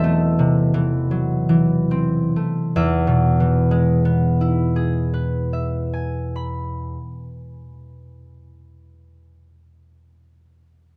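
Serene and peaceful, this short excerpt from a longer classical piece features a solo concert harp in E major. Rubato at around 45-58 BPM in 4/4, it slows through its opening 2.8 seconds on an A minor chord over E before settling onto E major. The fingerpicked, ringing tones span E1 to B5 and sit up front, captured with close, detailed microphones and very little reverb.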